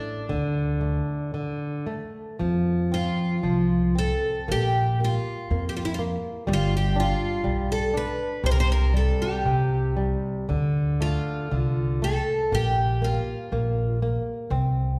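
Heard from further back in a reverberant recital hall, this mournful, longing fado-style ballad in F major moves in a rubato 2/4 at roughly 57-63 BPM, cut from a longer piece. A picked twelve-string acoustic guitar carries the melody with a shimmering, octave-doubled, woody tone, old strings and a slapback echo, while a bright, boxy flamenco guitar fingerpicks the accompaniment with audible finger squeak. A pizzicato upright bass on steel strings underpins them, and after a short break from 1.3 to 2.4 seconds the twelve-string melody continues until 14.0 seconds.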